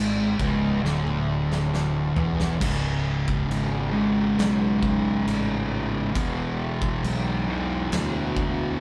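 Stoner and doom metal at a crawling 68 BPM in 4/4, this short cut from a longer piece feels sludgy and ominous, rooted in C# phrygian. A thick, double-tracked fuzz guitar sits up front playing a distorted, picked riff that runs from C#2 to E3, moving from a C#m chord to C#5 at 2.6 seconds and on to E5 at 6.1 seconds. Beneath it, a fingered electric bass with overdriven fuzz holds the low end from C#1 to D2, sounding both direct and amped. An oversized, low-tuned acoustic drum kit comes in at 0.4 seconds with a boomy kick, fat snare, toms and dark crash cymbal, and it plays a fill from 0.8 to 2.6 seconds. The kit's big, pumping room sound is saturated and gritty, while the whole band, playing live together in one room, carries a moderate studio reverb.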